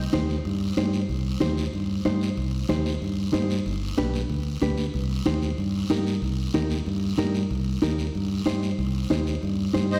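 Driving and passionate, this cumbia moves in a straight 4/4 feel, cut from a longer piece. A round, punchy fingered electric bass sits up front and carries the low end, while a dark, clean and compressed electric guitar supplies mellow fingered accompaniment over a harmony that shifts from C minor to G and back. Raspy guiro scrapes close and dry, and very quiet, high-tuned congas with a thin, damped skin sound bright yet distant, as if heard across a large room. A reedy musette accordion, shimmering and full, arrives only at 9.9 seconds with a brief close-miked melodic touch. The whole recording is bathed in the lush reverb of a church or concert hall.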